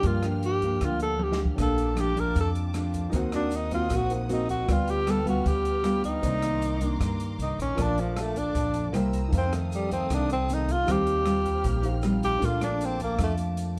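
A straight 4/4 bossa nova groove at 155 BPM in Bb major sets a relaxed, sophisticated mood in this clip from a longer piece, carried by thumpy pizzicato upright bass on gut strings, fingerpicked dark nylon-string guitar and an airy, polished jazz kit whose brief fill at 1.2 seconds ushers in a grainy, distant tube shaker at 1.6 seconds. Up front, a breathy, whispered tenor saxophone solos with vibrato, soft attacks and scooped notes over chords moving from Gm7 through Ebm6 and Cm9 to Eb69 and back to Bbmaj7. A natural-sounding baby grand piano and a lush bowed string section sit in the background, all wrapped in light reverb and a dark, warm production.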